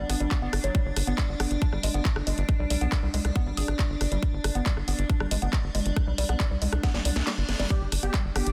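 A straight 4/4 pulse drives this alien, psychedelic trance cut, with a tight, tape-warm electronic kick up front and a layered garage kit of handclaps, hi-hat, rim click and a cracking snare, both set in small room reverb. Underneath, a punchy sequencer bass of sawtooth and square waves sits forward, its filter pluck giving each note a fast attack and a decaying tail. A woody, warbling wave-folded pluck plays a riff through chorus and tape echo, while an evolving wavetable pad holds bright, morphing chords through a phaser and its own built-in reverb, and both of these pump against the sidechain. A drum fill begins at 6.8 seconds, the kick briefly drops out, and a very quiet reverse cymbal leads into a detuned supersaw stab at 7.7 seconds, carried by phaser, delay and sidechain pumping. The mix is dense, dry and heavily limited in a modern way, and the clip is cut from a longer piece.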